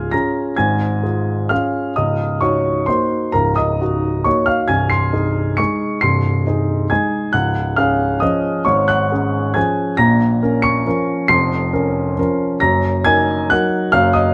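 Playful and elegant, this short clip from a longer classical piano waltz moves in a rubato 3/4 at 123-144 BPM in Db major, its harmony passing from Db through Ebm7/Db, Ab/C and Bbm before settling on Ebm/Gb near 12.6 seconds. A solo upright piano plays throughout the 14.3 seconds, spanning C1 to Db7 with a woody, intimate tone, long sustain and audible action noise. Close, detailed microphones keep the instrument up front, while a moderate recital hall reverb adds a sense of space around it.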